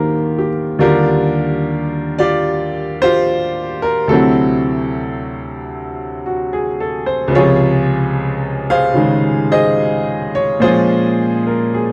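Sophisticated and playful, this short solo jazz passage, cut from a longer piece, features a bright, woody upright piano with long sustain, sitting up front and moving at 73 BPM in a swung, rubato 4/4 through rich chords from Ebmaj9 to D9, Dbmaj7 and Bbm7, all captured in a dry, close 1970s-style studio sound.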